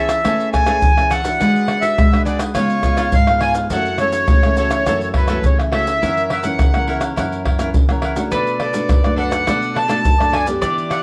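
A straight 4/4 samba and choro groove at 104 BPM drives this festive, lively passage cut from a longer piece. Maracas, pandeiro, tamborim and a tight surdo sit up front, played close with soft hands. Above them a reedy accordion carries the melody with a slow beating in its tone, while a crisp, picked cavaquinho and a classical, fingerpicked nylon-string guitar, its finger squeak audible, fill out the accompaniment. The harmony moves from Amaj9 through G#m7b5, C#7 and F#m7 to F#7, and at 8.3 s a round, double-strung mandolin enters with a short second line touched by slapback echo as the chords shift to Bm7. The whole recording sits in a moderate studio reverb and carries the worn, warbly pitch drift of old cassette tape.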